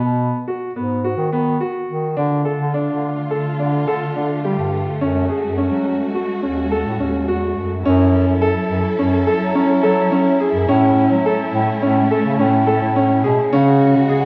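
Contemporary chamber music in a restless, urgent 5/4 at 106 BPM, cut from a longer piece and settling into F# minor at 7.9 s. A clear, up-front concert grand piano plays open, long-sustaining arpeggios over a warm, roomy bass clarinet bass line, and a dark, lush string section joins at 2.2 s with bowed, expressive sustained chords played with vibrato. A recital-hall reverb surrounds the trio, and a worn cassette-tape warble adds a drifting pitch.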